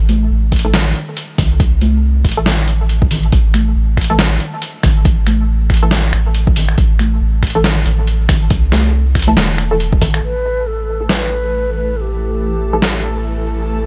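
A round, soft sub bass with tube saturation sits up front in this brooding, heavy excerpt of deep dubstep in A minor, moving at 139 BPM with a swung half-time feel over an overdriven electronic kick and a muffled, tape-warm sampler-style kit of finger snaps, hi-hat and snare. Bright conga hands sit in the background through dub echo, while a muted, nasal filtered chord stab with lush chorus and echo sounds over an A5 chord. At 10.2 seconds a breathy, hollow low ney takes the melody with vibrato, and from 10.9 seconds a cloudy granular pad enters with its own reverb, in an otherwise dry, dark-topped mix.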